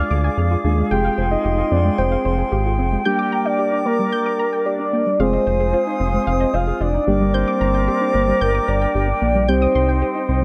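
A dark, octave-layered synth lead with phaser and tape echo carries the melody from 0.9 s in this melancholic yet driving pop excerpt, riding over a deep, up-front analog bass, intimate muted felt-like synth keys, gentle chorused pluck arpeggios and pure, vibrato-laden flute section chords within a lush hall reverb.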